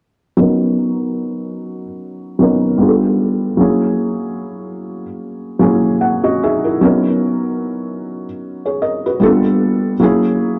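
A dark mix with moderate plate reverb frames this mellow, nostalgic hip hop fragment with a swung sixteenth-note feel, where a lone felt-muted upright piano sits up front with a soft, intimate, short-sustained tone, cycling through rich Bmaj9, G9 and F#9 chords under a low-pass filter sweep and slipping in a brief fill from 5.2 to 6.8 seconds.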